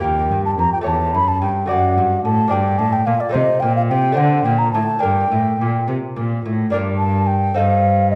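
In a straight 6/8 at 72 BPM, this solemn, introspective baroque-style sonata movement in G minor, cut from a longer piece, places a pure, wooden-toned flute melody with tongued notes and vibrato up front over a dark, reedy bowed cello line with a gut-string tone and a bright, delicate fingerpicked lute on double strings, set in the reverb of a recital hall, with a new section arriving at 6.7 seconds.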